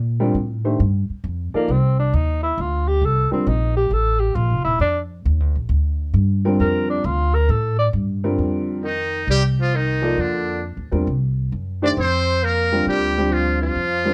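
A breathy tenor saxophone leads this searching, spiritual fragment of modal jazz, entering at 1.6 seconds with a whispered, intimate subtone, soft attacks, scooped notes and vibrato, taking the solo through the opening section. A woody, pizzicato upright bass sits up front beneath it from the start, and a vintage, slightly detuned upright piano with long sustain adds smooth accompaniment, falling silent at 3.5 seconds before returning. The swung harmony moves unhurriedly between Bb and F7sus4, giving the music an open, meditative feel. At 8.9 seconds a trumpet with a metal mute joins on melody, its tone brilliant, buzzy and thin with light vibrato, set distant and roomy in plate reverb. The production is dark and warm, with little reverb on the rest of the band.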